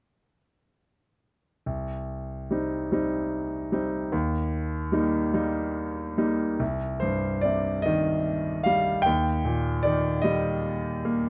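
A bright, brilliant concert grand piano with a deep bass plays alone and up front from 1.7 to 11.3 seconds in this wistful, melancholic classical excerpt in C minor, moving at a slow, rubato 49 BPM in 6/8 and ranging from C2 to G5 over a Cm-to-Eb progression that restarts with a new section at 6.6 seconds, all set in light reverb within a dark, warm production.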